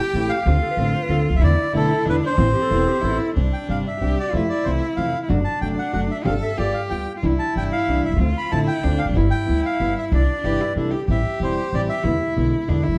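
Bathed in a wet large-studio reverb, this elegant, nostalgic tango excerpt in a rubato 3/4 puts a reedy, airy bandoneon melody up front over a thumpy, woody pizzicato upright bass and dark, full-bodied fingerpicked nylon-string guitar, while a bright, focused bowed cello with vibrato carries a second line and a raspy, growling jazz-style clarinet plays in the background from 0.6 to 3.4 s and again briefly at 10.4 s.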